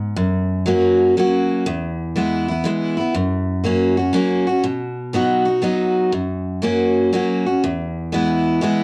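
A bright, full-bodied steel-string dreadnought carries this sunny, down-home country fragment alone, picked up front with fresh strings and the occasional finger squeak, its tone colored by cassette tape. Moving in a swung three-four lilt, it repeats one short passage twice over chords that move between F#, E and B, with the second pass beginning at 4.6 seconds. A wet, small-room reverb and the home-cassette recording give the playing an intimate, homespun feel.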